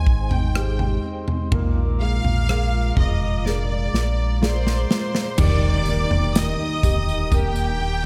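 Tender and emotional, this pop ballad excerpt sets a lush, bowed violin section with vibrato over a soft, felt-muted upright piano and a fingerpicked nylon-string guitar, both treated with ensemble chorus and the guitar also with delay. A glassy, ethereal glass harmonica holds sustained chords, a deep sine sub bass with octave anchors the low end, and a polished, airy modern drum kit with a tight kick plays a fill from 3.4 to 5.4 seconds. At 5.4 seconds a new section begins on Ebmaj7 after Abmaj7 and Bb7, bringing in a jingly tambourine and a very quiet electronic impact, heard within light reverb and studio ambience.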